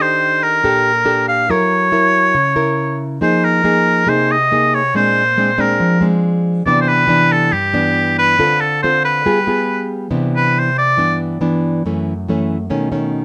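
A straight 4/4 bossa nova groove at 139 BPM sets a breezy, relaxed mood, with a bright, classical-style oboe singing the melody up front with light vibrato over a small, fingerpicked nylon-string acoustic guitar whose chords drift from Ebmaj7#11 to a G7b9 turnaround. The oboe steps out for a solo at 10.1 seconds and drops out at 11.2 seconds, leaving the guitar alone until the clip cuts off at 13.2 seconds, all in a light reverb.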